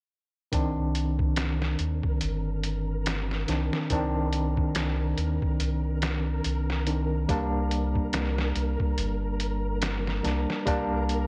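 A slow, swung sixteenth-note groove at 71 BPM in 4/4 drives this cinematic, smoky trip hop fragment in C minor, cut from a longer piece. The sampler-style drum kit sits up front, compressed and pitched down, with a thumpy kick, a medium-tuned snare and hi-hat, all carrying a gritty, tape-warm character. A round, deep analog bass blends sawtooth and sine tones into a dark, sustained low end. An overdriven tine electric piano, barky and pushed through a combo amp, colors the Cmadd9 harmony with tremolo and tape echo before moving with the shift to Gm at 7.3 seconds. From 1.2 seconds a faint, flickering granular texture hovers on a high Bb, detuned and slow to bloom, with its own reverb and a long release. Light reverb and digital ambience surround the mix, while a worn cassette-tape quality adds a warbly pitch drift.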